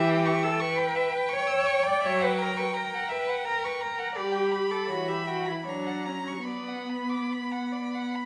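Heard through the moderate reverb of a recital hall, this elegiac, yearning fragment is cut from a slow romantic movement for string quartet in 3/4, played with a free, rubato feel. Each part is a single bowed player with vibrato, and all four begin together. The first violin carries the melody in a rich, expressive voice, sliding between notes with portamento. The second violin weaves a warm second line with a soft attack, climbing higher than the melody at times. Up front, the viola gives smooth, even accompaniment and drops out at 7.2 seconds, while the cello holds the bass with warm, expressive portamento. The harmony passes through diminished and dominant colours before resolving to a B minor chord at 6.5 seconds, and the fragment closes at 8.3 seconds.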